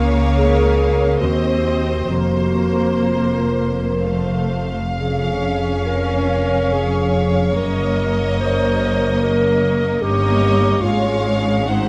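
All parts sound together from the start of this short cut from a slow, elegiac romantic orchestral movement in 3/4, moving with rubato at 61-75 BPM and settling into Db major from 5.0 s: a focused violin melody with vibrato floats over a second violin line and a dark, roomy clarinet counterline. Beneath them, distant viola accompaniment and smooth, even cellos sit with close, soft-attack double basses, while a very quiet ringing harp spreads arpeggios across its range. Moderate stage reverb and a dark, warm production give the melancholic harmony, drifting through diminished and suspended colours before resolving, a shadowed glow.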